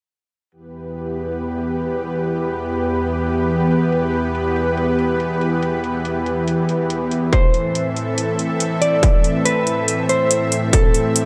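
Heavy and chaotic, this cut from a longer heavy wobble dubstep piece moves at 141 BPM in 4/4 with a half-time feel, centred on E minor. A lush, detuned supersaw pad stands up front from 0.5 seconds, holding sustained chords across a broad span from E2 to E5 with a sub-octave weight, a slow attack and sidechain pumping. Metallic electronic hi-hats run alongside it, softened by a low-pass filter. At 7.3 seconds the harmony shifts from Em to Am as a distorted, layered electronic kick drum punches in up front and a dark, clean, fingered electric guitar enters with a melody between A4 and D5, bathed in spring reverb. A moderate, lush hall reverb gives the whole track a spacious room.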